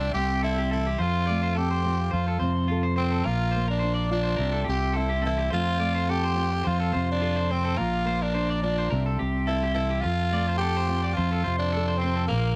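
Sunny and joyful, this swinging highlife excerpt puts a raspy, gritty tenor saxophone up front on the melody with vibrato, over a fingered electric bass with an amped, forward tone, a fingerpicked nylon-string guitar with audible finger squeak, twangy picked arpeggios from a slightly broken-up electric guitar bathed in tape echo, and very quiet, reedy accordion chords, all cycling through C, F and Bb in a dry, close 1970s-style studio sound.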